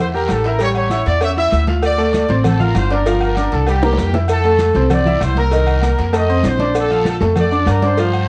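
A brisk, straight salsa groove in 4/4 drives this sunny, danceable cut, taken from a longer piece, with congas, maracas, guiro, and timbales with agogo bells spread through the background, alongside cowbell with bongos. The congas sound thick-skinned, damped and high-tuned under soft hands, the guiro raspy, the maracas grainy and vintage, the timbales and agogo bells ringing and saturated, and the low-tuned cowbell and bongos round, dry and very quiet. Up front, a woody, thumpy upright bass played pizzicato on gut strings anchors the low end, while a bright, brilliant concert grand piano comps through a progression that moves from A7 and Dm7 toward Fmaj7 and Bbmaj7. A clear, punchy trumpet section carries the melody with light vibrato, sounding roomy and somewhat distant despite its forward place in the mix. A drum fill at 3.8 s marks the midpoint, and the whole track sits in a moderate studio reverb with a worn cassette-tape character and warbly pitch drift.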